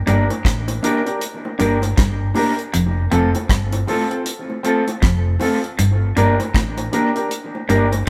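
Roots reggae at a relaxed 79 BPM in G minor, this hypnotic, meditative excerpt moves from Gm to F at 2.7 seconds and back to Gm at 5.8 seconds, with a 16th-note swing feel. A vintage muted fingered electric bass anchors the low end, its tone dark, round and punchy from the foam mute and amp. A mellow electric guitar sits up front with clean, fingered accompaniment, bathed in spring reverb and analog delay, while a second, twangy guitar at the edge of break-up picks a low riff through a phaser. A warm grand piano adds stabs of color in the middle register. The deep reggae drum kit is dry and up front, with a tight kick, hi-hat and rim click touched by analog delay, and low-tuned bongos played with soft hands sit in the background, compressed and saturated with their own delay. The band sounds as if playing live in one room, held together by a moderate studio reverb.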